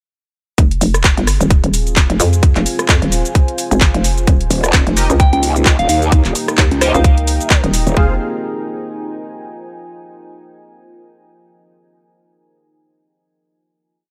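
A dark analog pad, a hollow, knocking FM bass, a tight four-on-the-floor electronic kick and a garage kit of claps, hats, rim clicks and shaker all arrive together at 0.6 seconds, launching a bouncy, swaggering bass house piece in F minor at 130 BPM with a swung sixteenth feel. The punchy FM bass plays chopped phrases up front with overdrive and sidechain pumping, while the moody square-and-saw pad sits in the background on sustained chords, moving from Fm to Eb at 4.3 seconds. A deep, mellow ambient pad drifts in at 1.8 seconds with slowly shifting chords, chorus and built-in reverb. At 4.5 seconds a growling, detuned, saturated bass joins with wobbling formant-filtered phrases that change wobble speed, answering the first bass, and soon after come sparse, nasal band-passed chord stabs with phaser and tape echo, and a gentle, warbling vintage FM bell playing short answering phrases. The drop ends at 8.0 seconds, and the ambient pad then holds a final Fm chord until 9.8 seconds.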